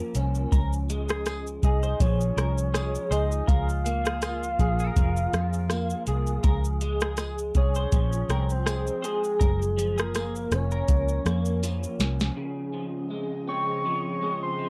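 A slightly broken-up electric guitar through a small old amp opens at 0.0 s on a rootless Gbmaj7, its picked, compressed tone colored by ensemble chorus and vibrato. This nostalgic, hazy bedroom-pop cut in Db major then settles into an unhurried 81 BPM with a light 16th-note swing. An up-front analog rhythm box pushes a deep kick, crisp snare, metallic hats, rim click and shaker through overdrive, beside a dark, round, foam-muted fingered bass. A clean picked guitar with analog chorus and tape echo sits in the background with a jingly, band-limited tambourine. At 1.6 s a full, octave-layered synth lead enters, blending triangle and sine tones with a sub octave, subtle chorus and vibrato, over a cycle of Dbmaj7, Bbm7 and Gbmaj7. After a drum fill, a swirling, detuned sawtooth pad with phaser and chorus rises from the back at 12.8 s on Dbmaj7, all captured in a dry, gritty hardware sound.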